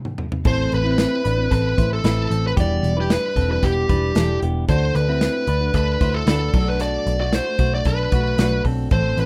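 A straight, even 4/4 pulse drives this short passage of jangly indie pop, cut from a longer piece. It opens with a drum fill as the rest of the band holds back, then the fingerpicked acoustic guitar slips in at 0.4 seconds and the full group arrives at 0.5 seconds. The studio kit brings a tight kick, a medium-tuned snare, hi-hat, toms and crash. Up front, a foam-muted, round vintage bass sits alongside a smooth, dark, overdriven lead guitar carrying the melody. Beneath them, a twangy, compressed clean electric guitar plays arpeggios, and a full-bodied jumbo acoustic guitar is fingerpicked in the background. The chords move through Am, Em7, D and Bm7, giving a bright yet nostalgic mood, while the dry, rough home-demo mix keeps everything close and unpolished.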